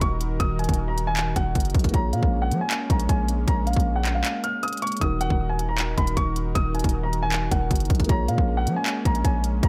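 A dark, up-front mix sits in digital ambience, with a hard-hitting trap drum kit and a heavy 808-style bass pressing forward in this short fragment of a longer hip hop track. The drums sound electronic and produced, pairing a hard-clipped kick with crisp hi-hats and handclaps in a half-time feel. The 808 is punchy and sine-based, with a noise layer, a fast attack and a decaying tail. Above it, a mellow baby grand piano carries the melody high in its range, its intimate tone and audible action noise softened by a low-pass filter and trailed by a digital delay. A second grand piano, smooth, vintage and very quiet, plays the accompaniment, while a detuned sawtooth analog pad with chorus and a slow attack sustains minor chords underneath. A brief break from 4.2 to 5.0 seconds interrupts the brooding, hard-hitting groove before it resumes.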